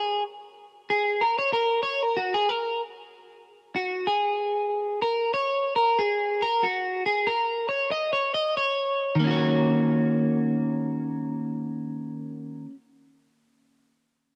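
In a gently swung 4/4 with a loose sixteenth-note lilt, this mellow, wistful indie pop fragment is carried entirely by a lone electric guitar. Sitting up front in the mix, the picked guitar has a bright, twangy, scooped tone that hovers at the edge of break-up, colored by a lush chorus and a vibrato effect. For the first 9.2 seconds it plays a clean, unaccompanied solo line over open, chordless ground, ranging across two octaves. At 9.2 seconds the music moves into a new section as the guitar settles onto an E-flat minor seventh harmony, continuing to 12.8 seconds. Light reverb and a digital ambience lend the recording a soft, airy sense of space.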